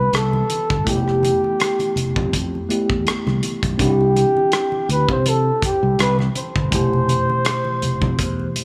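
A breathy, dark flugelhorn opens this short cut from a longer piece of lush 1970s-style soul, sounding together with a worn tine electric piano and a punchy fingered electric bass at a relaxed 82 BPM, with a gentle 16th-note swing. The flugelhorn carries the smooth, romantic melody up front, whispered and intimate, with soft attacks, scooped notes, light vibrato and a trail of tape echo. Beneath it, the slightly out-of-tune electric piano comes through its built-in speakers, lightly overdriven, while the bright bass sounds direct and amped. From 0.1 seconds a damped 70s drum kit joins, dry and up front with a tight kick, hi-hat, rim click and a rolled-off top. Very quiet, low-tuned congas played with soft hands add a thick-skinned, warm pulse. The harmony moves from Cmaj9 through Fmaj9#11 and Cadd9, all set in light small-room ambience.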